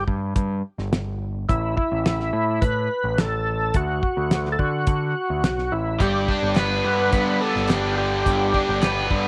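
A damped 70s drum kit with a fat snare and tight kick drives a swaggering, straight 4/4 classic rock groove at 106 BPM, beneath a gritty, key-clicking overdriven tonewheel organ melody with chorus vibrato, slow rotary speaker and slapback echo, and a growling, overdriven picked bass up front; at 6.0 s a cranked stack guitar and a distorted electric guitar enter with bright overdriven riffs over a very quiet, shouting second organ holding chords, and at 6.6 s faint, hollow group handclaps join in the small room, in this passage cut from a longer piece.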